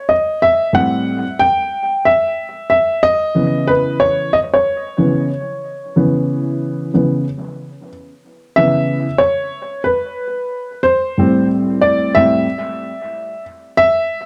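Hip hop at 92 BPM with a swung sixteenth-note feel in C# minor sets a mellow, nocturnal mood in this brief cut from a longer piece, where a lone upright piano sounds woody and slightly detuned, intimate and up front with audible action noise, carrying analog delay inside a dark production with light reverb as the harmony moves through C#m, Am7 and C#m7, shifting into a new section at 8.6 seconds before the piano closes at 14.3 seconds.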